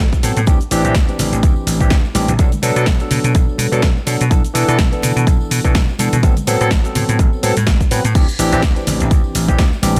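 A dry, close-sounding sensual and nostalgic filtered disco house excerpt at 125 BPM swings lightly in 4/4, as a bright, barky tine electric piano with phaser and sidechain pumping moves through D9sus4, Bm7, E7sus4/B and Am69 over a warm, amped vintage slap bass, a punchy, tape-warm electronic kick sits up front, a layered house kit adds a cracking snare plus pumping hi-hat, shaker and crash, and very quiet tambourine and congas played with hard hands fill in the groove.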